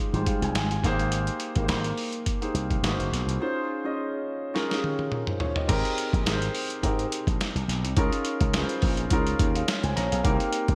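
A growly, punchy slap bass run through an envelope filter drives this breezy, urban slice of polished 1980s jazz-funk pop at 105 BPM in Ab major, with a lightly swung sixteenth-note feel. Up front, a dark, mellow concert grand piano with subtle chorus plays a short fill at 0.3 seconds. A muffled, pitched-down sampler-style drum kit with a thumpy kick and gated reverb plays a fill leading into the second section at 5.7 seconds. The bright digital production sits in a lush hall reverb, and the chords move from Fm7 through Abmaj7 and Eb7sus4 to Abmaj9 in this cut from a longer piece.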